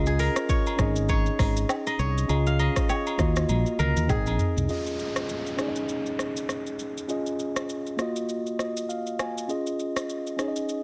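A dry, close-sounding afrobeats excerpt in Db major at 100 BPM with a swung sixteenth-note feel, joyful and sunny, where a mellow, clean tine electric piano carries the chords throughout, a crisp, ringing fingerpicked kora riff with delay and a round, up-front fingered electric bass play until about 5 seconds, agogo bells and woodblock add small-room percussion early on, an electronic afro-pop drum kit with a deep kick and metallic hats drives the groove and fills at 3.5 seconds, and an electronic downlifter sweeps underneath the second half as the electric piano plays a fill near 8.3 seconds.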